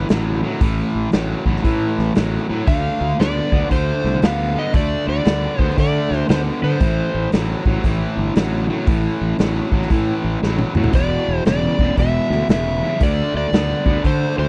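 Dry and close with a 1970s studio feel, this smoky, brooding blues rock and southern rock excerpt swings in A minor at 116 BPM, as a sludgy, double-tracked distorted guitar riff sits up front over a growly fuzz bass and a raw garage drum kit with punchy kick and rolled-off top, while a dark overdriven slide guitar sings its melody from 2.7 to 7.3 seconds and returns at 11.0 seconds after a brief drum fill, over chords moving from A5 through Dm to E5 and D5.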